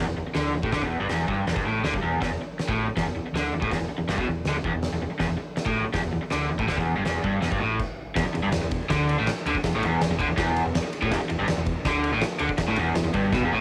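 This raw, swaggering garage rock cut has the light reverb and character of a home recording on cassette tape, and it is clipped from a longer piece. At a driving 162 BPM in straight 4/4, a crunchy, bright, overdriven guitar hammers out a picked riff in its low register over an E5 harmony from the opening moment, double-tracked and sitting up front with a cassette-tape grit. Beneath it, a hollow-body short-scale electric bass played with the fingers adds a dark, round, amped bottom end. An oversized, low-tuned acoustic drum kit enters at 0.3 seconds, pushed forward in a bright stone room that pumps around a fat snare, a boomy kick, dark cymbals, hi-hat, ride and crash. Everything halts for a brief stop at 7.8 seconds before the band charges into a new section at 8.2 seconds, with a drum fill at 13.3 seconds leading out.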